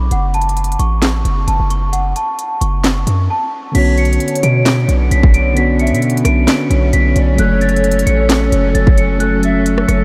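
Hip hop in a trap style, this menacing, brooding clip sits in B minor at 132 BPM with a half-time feel and is cut from a longer piece. A punchy, heavy 808-style bass with a fast attack and sine body sits up front beside an electronic trap kit of hard-clipped kick, sharp snare, crisp hats, handclaps, rim clicks and crash cymbal, while a large celesta carries the high, bell-like melody through a low-pass filter and a diffuse ambient delay. After a short break from 3.3 to 3.7 seconds, the harmony moves from F#m to Bmadd9 and back to F#m at 7.4 seconds. At 3.7 seconds a clean tine electric piano, a dark, distant string section bowing sustained chords with light vibrato and gut-string tone, and an airy bamboo pan flute in the background with a soft chiff all join in. The whole mix is dreamy and soaked in a huge ambient reverb.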